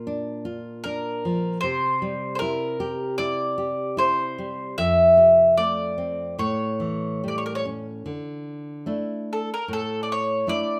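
A round, picked mandolin with doubled strings sings a mournful, passionate melody up front in this rubato fado-style ballad fragment, over a full-bodied, deep classical nylon-string guitar fingerpicking chords from Bb through C7, Fmaj7 and A7 to a Dsus2 arriving at 8.1 seconds, its finger squeaks audible in a rough home-demo mix bathed in wet studio reverb.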